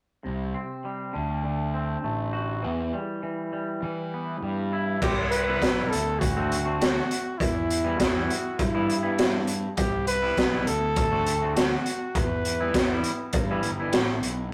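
A close-miked trumpet with vibrato and scooped notes carries the melody from 5.0 seconds, entering together with a raw, gritty garage drum kit built on a punchy kick and a high-tuned snare, in this bittersweet, moody indie rock excerpt in E minor at 101 BPM. Before that, a twangy, clean picked electric guitar with spring reverb plays the riff over a fuzzy, overdriven fingered bass that sits up front. The chords cycle through C5 or Cmaj7, D7 and Em, and the rough rehearsal-room sound carries light reverb and saturation.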